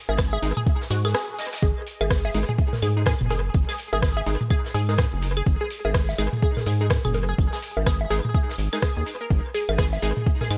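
A swung 16th-note groove at 125 BPM in 4/4 drives this quirky, sparse minimal techno excerpt, anchored by a soft, tape-warm electronic kick sitting up front, with a garage kit of metallic, overdriven hi-hats, rim clicks and shaker bathed in dub echo. Electronic bongos, claves and toms add analog colour through tape echo, while an acoustic street-band kit of hi-hat and snare stays airy and in the background, its hats pumping against the sidechain. A rubbery, hollow square bass bounces up front between F#1 and G#2, pumping against the sidechain, as a juicy, squelchy blip pluck plays a riff from F#4 to G#5 through phaser and dub echo. Crisp digital chord stabs, detuned and decaying, arrive at 0.4 seconds with their own phaser and echo. A brief break opens at 1.1 seconds with a drum fill at 1.4 seconds, and the dry, echo-heavy mix keeps every hit close and clear.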